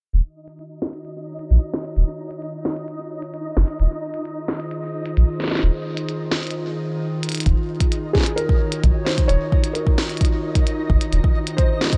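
A dry, low-passed sound opens this cerebral, melancholic IDM excerpt at 131 BPM in Eb dorian, where a warbling, detuned tape-like pad with chorus and shimmer reverb holds Ebm7 and Fm7/Eb chords over a round sine sub bass, while a glitchy kit of tiny snare and clicky hats sits up front and a faint, flickering granular texture hovers above. Filter sweeps move across the sub bass and pad through the opening 7.5 seconds, leading to a break at 6.5 seconds and a drum fill at 7.2 seconds. At 7.5 seconds a deep electronic kick drops in, and from 8.1 seconds a felt-muted upright piano with audible action noise adds an intimate melody through digital delay and shimmer reverb.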